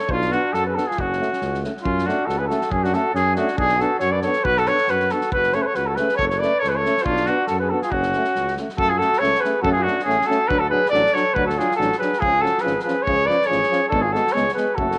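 Virtuosic and bittersweet, this short Balkan brass band excerpt in F# harmonic minor moves at 139 BPM in a swung 2/4, with an up-front cornet carrying the vibrato-laden melody over a punchy flugelhorn second line, a tuba bass with light vibrato, a mellow euphonium and a clear, distant trombone in the background, and an acoustic kit of punchy kick and medium-tuned snare, all set in a roomy echo-chamber reverb as the chords shift from B minor and F# minor to D and C# after 8.8 seconds.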